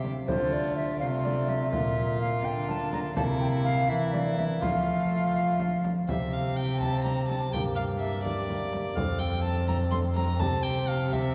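Heard from further back in a reverberant church space, this festive, courtly dance for a small period consort is a short section cut from a longer piece. It moves in a lilting 6/8 at 83 beats per minute, counted in dotted quarters, with a straight feel. A single gut-strung violin carries the melody with a nasal, airy bowed tone, while a hollow, mellow tenor recorder joins at 0.3 s with a tongued second line, its wooden chiff and gentle vibrato adding breath to the texture. A distant, roomy bassoon supplies warm accompaniment in a narrow middle range, and a bowed period cello, the most prominent part, anchors the bass. A deep, band-limited frame drum played with soft hands keeps the dance pulse underneath. The harmony turns from D minor through B-flat, C7 and F, and after a shift at 6.1 s it continues through G minor and F before settling on C.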